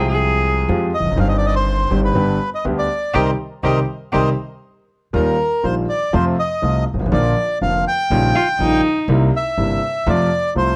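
A rubato tango in four, passionate and dramatic, opens on a plucked, woody upright bass and a vintage-toned concert grand with a deep bass, while a bowed cello with a nasal gut-string, period-style voice carries a second line. A dark, reedy bandoneon bathed in plate reverb enters with the melody at 0.9 seconds. The band hits a shared accent at 3.1 seconds before the music brightens into a major-key section at 5.1 seconds, and the cello briefly returns at 8.4 seconds, all captured close and detailed in a lightly reverberant room.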